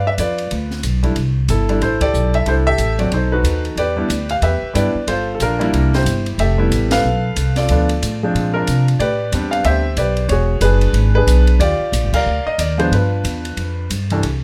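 Clear concert grand piano and woody, pizzicato upright bass open this relaxed, playful swinging jazz piano trio excerpt at 184 BPM, with an open jazz drum kit joining at 0.2 s on dark cymbals, a high-tuned snare and a boomy kick. The intimate piano carries the melody up front, its action noise audible and its deep bass reaching down to C2. The steel-strung bass sits close beside it, and band accents land at 2.0, 6.9 and 12.1 seconds over shifting chords from G7 through Fmaj9#11 and Ebmaj9, all in a detailed, closely miked studio room with light reverb.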